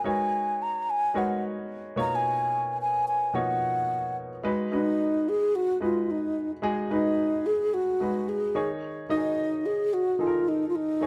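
A breathy, hollow alto flute with vibrato carries the melody up front over a warm, intimate baby grand piano with audible action noise and short sustain in this driving, danceable disco excerpt, its lush minor-eleventh and suspended chords ringing in a moderate echo chamber reverb as the passage shifts to a new section at 4.4 seconds.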